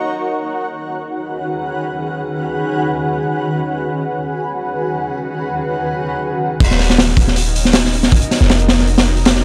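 A dry, gritty small-room hardware recording frames this dark, atmospheric drum and bass excerpt at 159 BPM in Eb minor, where a blurred, detuned granular cloud pad with its own reverb sustains Ebm7 and Db7sus4/Eb chords alone until the drop at 6.6 seconds brings in a deep, boomy 808-style bass with tube saturation and a crunchy, up-front breakbeat kit with a punchy kick, high-tuned snare and dark cymbals.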